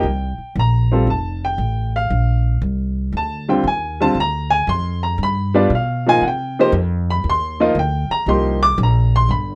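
A swung 4/4 pulse at 117 BPM, with eighth notes lilting at a 68% swing, sets up this brief jazz excerpt in the small-group swing and bop style, cut from a longer piece. The mood is late-night and cool, centred in C minor, with the tuning sitting just above standard at A4 = 441 Hz. An upright piano with a woody tone and short sustain provides the accompaniment across the whole 9.6 seconds, spanning D3 to D6 and sitting up front in the mix. Beneath it, a pizzicato upright bass on steel strings plays from F1 to C3, its sound growly and thumpy, also placed close to the listener. The harmony moves through F and Bb before a Dm7b5 at 4.2 seconds turns to G7 and resolves onto Cm7 at 6.2 seconds, all wrapped in a light reverb.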